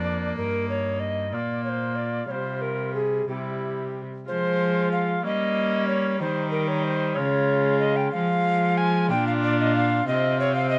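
A stone room's moderate reverb surrounds this solemn, courtly fragment of a renaissance-style consort dance in F minor, and its highs are softly rounded off. At 62 BPM in a straight 6/8, a pure, woody alto recorder with vibrato carries the melody up front, while a distant, roomy cor anglais with light vibrato sings a second line. Beneath them, a single bowed viola with a gut-string, period-style tone provides the accompaniment, and a rich, nasal period cello anchors the bass as the music moves into a new section at 4.3 seconds, passing through Fm, Gdim, Eb, Db, Fm and Bb before arriving at Csus4.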